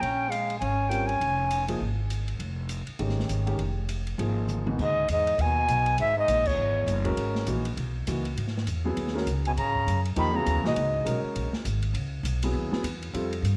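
An airy, reedy silver flute carries the melody up front with a bright, vibrato-laden trombone on a second line, while a woody, thumpy upright bass, a dark, smooth drum kit and a deep-voiced grand piano fill out this cool, intense swinging modal jazz fragment cut from a longer piece, marked by a drum fill at 4.5 s and a band accent at 6.4 s inside a moderate echo-chamber reverb.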